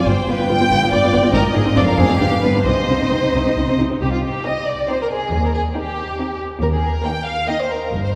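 In a quick triple metre at 138 BPM, played with a flexible rubato, this dramatic, restless C minor passage for string orchestra unfolds as a cut from a longer classical-period movement. The first violins carry the melody with a clear, focused tone and vibrato, set close, while the second violins add a lush, expressive second line that sits up front. Beneath them, the violas supply a dark, woody accompaniment, and the cellos hold the bass in the background with a distant sound. The double basses reinforce the low end with a rich, close presence. The harmony pushes from G7 through Ab and Dm7b5 back to G7 before resolving on C minor at 2.7 seconds, then moves to Cm/Eb and arrives on Eb at 6.6 seconds. A long, wet church reverb of 3.7 seconds wraps the ensemble in a spacious hall sound.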